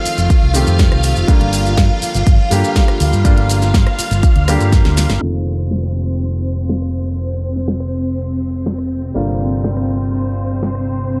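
Nu-disco with a sleek, cosmic mood, built on lush, vintage string-machine chords with ensemble chorus and sidechain pumping, a clear concert grand piano accompaniment trailing diffuse ambient delay, and a round, amped fingered electric bass up front, moving between F7 and Gm7. A punchy electronic kick drives the opening until 4.8 seconds, with a fat-snared pop drum kit and maracas in the background, the kit's hats and snare low-pass filtered. After a drum fill, a filter sweep runs from 5.2 seconds to the end of this short cut from a longer piece, as the maracas drop out and the kit carries on until 10.8 seconds under light digital ambience.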